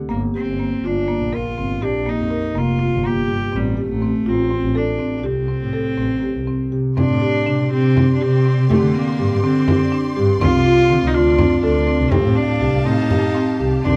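Hypnotic and pensive, this contemporary chamber piece moves in an uneven 7/8 metre with a straight feel, and it is cut from a longer work. A woody marimba played with medium mallets opens at 0.0 seconds with mid-forward arpeggios, while a bowed cello carries the melody in a reedy, gut-string period tone and a bowed double bass sits up front with expressive vibrato, soft attacks and portamento. The harmony passes through Gm7, F/A and C5 before shifting at 7.0 seconds to Csus2, Dm7 and Fadd9. At that point a lush symphonic string section enters quietly behind the soloists with focused, sustained chords, joined by a frame drum struck with hard hands for a compressed, saturated sound. Close, detailed microphones and light reverb keep the rich bowed lines intimate and clear.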